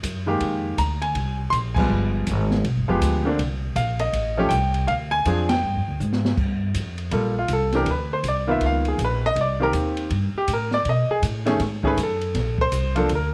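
A brisk 161 BPM swing in 4/4 drives this moody, cool fragment of a jazz piano trio: an up-front pizzicato upright bass with a woody, growly tone anchors the low end while an acoustic kit in a small room adds dark cymbals, a high-tuned snare and a boomy kick. A clear, up-front baby grand with short sustain carries the melody over shifting extended chords, with band accents punctuating the opening. After a drum fill at 6.0 s, the piano takes a solo from 6.4 s as the harmony settles into G minor, all framed by light reverb and small-room ambience.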